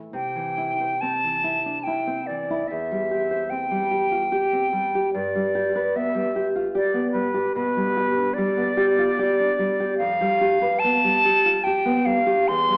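In a rubato 3/4 at 73 BPM, this melancholic, yearning romantic duo in C major, tuned to A4 = 438 Hz, sets a bright, airy, straight-toned concert flute melody with a soft attack, close and up front, over a dark, fingerpicked classical nylon-string guitar accompaniment with audible finger squeak, both heard in a wet recital-hall reverb of 1.6 seconds and colored by an AM-radio sound.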